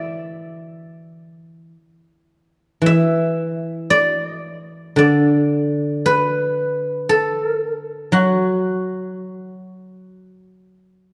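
Pastoral and elegant, this short fragment of a longer traditional Chinese piece features a solo guzheng played with fingerpicks at a slow, rubato 52-58 BPM in 4/4. The instrument sits up front with a ringing, silvery tone across a range from D3 to E5, moving from a brief opening passage into a new section at 2.8 seconds that carries through to 11.1 seconds. A moderate concert hall reverb and a dark production surround the plucked strings.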